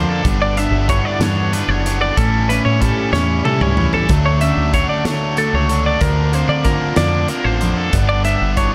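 Light reverb surrounds this short cut from a longer math rock and midwest emo piece, and the loose indie drum kit sits in a pumping studio room. At 62 BPM in 6/8, tuned to A4 = 444 Hz, the mood is wistful yet bright, moving through Gmaj7, A7, Dmaj7, Bbadd9/D and G. A twangy, compressed twelve-string electric guitar carries high picked arpeggios through a slapback echo, while a dark, fingered electric guitar with a phaser supplies clean accompaniment beneath. A biting, double-tracked overdriven guitar plays a riff in the middle register, and a round, foam-muted fingered bass anchors the low end. The drums enter at 0.2 seconds with a fat snare and punchy kick, adding a fill from 3.1 to 4.1 seconds.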